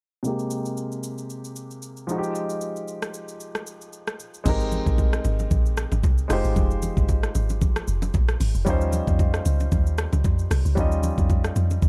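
The deep log drum bass stands out most: round, percussive and dark, with a fast attack that decays and a noise layer, arriving up front at the drop at 4.5 seconds. This short, soulful amapiano passage runs at 114 BPM in 4/4 with a light 16th-note swing and a deep, dark production mood. From 0.2 seconds, an intimate grand piano carries the chords through a low-pass filter sweep, its action noise audible as it moves from Abmaj9 to Fm9 and later reaches Eb13. A smooth R&B drum kit plays throughout, electronic and produced, with a knocking kick, metallic hi-hats, rim clicks, shaker and crash cymbal, re-recorded in a small room and placed up front. Congas and bongos join with the bass, bright, close and dry, with hard hands sitting in the background.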